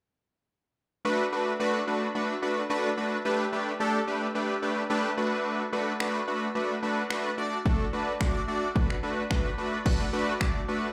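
A big, bright polysynth carries the accompaniment in this energetic, driving dance-pop excerpt, sounding fat and nasal with detuned sawtooth tones, a touch of ring modulation and a fast attack that settles into sustained chords. Up front in the mix from 1.0 seconds, it carries chorus, sidechain pumping and a slapback echo as it moves through Bm7, Gadd9 and D6 at 109 BPM in a straight 4/4. A punchy analog drum machine arrives at 6.0 seconds with a tape-warm kick, finger snaps and crash cymbal, also placed up front. A new section begins at 9.9 seconds, the drums drop out at 10.5 seconds, and the synth carries on until the clip ends at 10.9 seconds. The whole performance comes across as a live gig heard through a venue's PA, wrapped in club reverb and a moderate digital room ambience.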